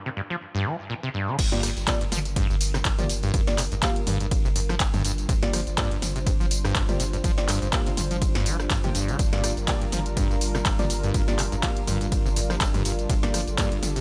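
Gritty and driving, this acid house excerpt opens with a squelchy, resonant sawtooth acid bass riff alone over a G7(no3) chord, its overdrive, chorus, cassette-tape character and tape echo giving it a worn bite. At 1.4 seconds the drop lands on Gm7 as a dry, punchy electronic kick, an up-front, tape-warm analog drum machine with punchy snare, handclaps, hi-hats, ride, crash, rim clicks, tambourine and toms, and a round sine sub bass with sidechain pumping all come in together, swung on the 16ths. A moody, detuned analog pad with 12-bit sampler grit and pumping, plus soft, nasal chord stabs with filter sweeps and tape echo, fill out a dark, close-sounding mix with little reverb.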